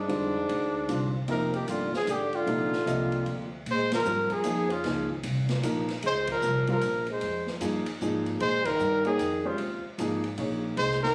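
Captured on a phone in the room, with light studio reverb and compression, this cut from a longer modal jazz piece moves at 152 BPM in a swung 3/4, searching and intense as it settles into Bb dorian at 3.7 s. Up front, a punchy trumpet with vibrato, scooped notes and a smooth top carries the melody, while a cup-muted trombone, veiled and breathy, sings a whispered second line; woody pizzicato upright bass and a warm grand piano fill out the harmony. A distant, roomy drum kit with dark cymbals and a boomy kick sits low in the mix, and the full band strikes accents across the second section.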